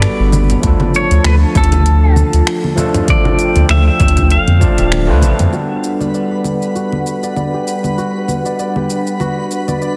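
This relaxed sunset chillout excerpt opens on a twangy, clean pedal steel guitar melody with fingerpicks, slide and digital delay, carried over a gritty, barky tine electric piano through a combo amp and a breathy, detuned pad treated with chorus. At 98 BPM in 4/4 with a swung sixteenth-note feel, a deep house kit with metallic hats, finger snaps, shaker and an overdriven, soft-clipped snare plays from the start, with soft-handed congas entering in the background at 0.3 seconds and a punchy, overdriven electronic kick arriving at 0.6 seconds. A round, sine-like sub bass sits up front, anchoring the move from Gmaj7 to Dm. At 5.5 seconds the steel, bass, congas and kick have dropped away and the harmony returns to Gmaj7 as a ringing concert harp enters with arpeggios, both harp and electric piano passing through filter sweeps. A faint, sparkling granular texture with an octave-up shimmer rises in at 5.9 seconds, all set in a moderate, lush hall reverb and a dense, heavily limited modern master.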